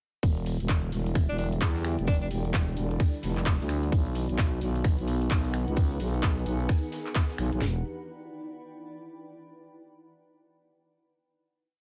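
Bass house at 130 BPM with a swung 16th feel, bouncy and aggressive: a growling, thick FM bass with overdrive and sidechain pumping sits up front over a tight garage kit of four-on-the-floor kick, cracking snare, toms and claps, which is layered with an overdriven big-room kit of cabasa, snaps, claps and hats and a very quiet, gritty, looped low-tuned acoustic breakbeat; meanwhile a detuned sawtooth pad with lush chorus and a mellow granular cloud pad pump in the background over Em7 and B, a bright alto saxophone with vibrato and delay plays a brief solo phrase from 1.3 to 2.3 seconds, and once the other parts stop at 7.8 seconds the granular pad rings on alone through the final chord to 9.4 seconds.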